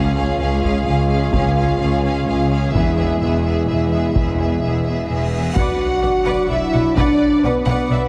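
Dark and epic, this cinematic orchestral film score moves at 128 BPM in 3/4 in B dorian, its bowed violin section carrying a lush, vibrato-rich melody over a second, more distant violin line, even violas, a close cello section and smooth double basses, while a roomy French horn section holds sustained chords through the C#, E and Bm harmony. A close, dry taiko ensemble struck with hard sticks drives the build-up from 0.6 seconds, a huge, bright cymbal swell and sub drop arrive at 5.1 seconds, and a tight trombone section adds sustained chords in the background from 5.6 seconds as the impact lands. The sound sits in a moderate scoring-stage reverb but is heavily compressed like a radio broadcast, in a passage cut from a longer piece.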